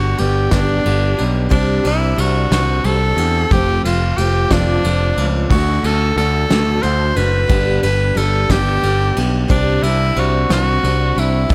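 An edgy, forceful tenor saxophone with vibrato, scooped notes and analog delay carries the melody up front in this nostalgic, jangly folk rock and heartland rock excerpt at 60 BPM in 6/8, over a full-bodied picked steel-string acoustic guitar, a bright, direct picked electric bass and a soft brush drum kit with a fat snare and tight kick that enters at 0.2 s, all moving through G, Csus2, F and D in an echo-heavy studio mix.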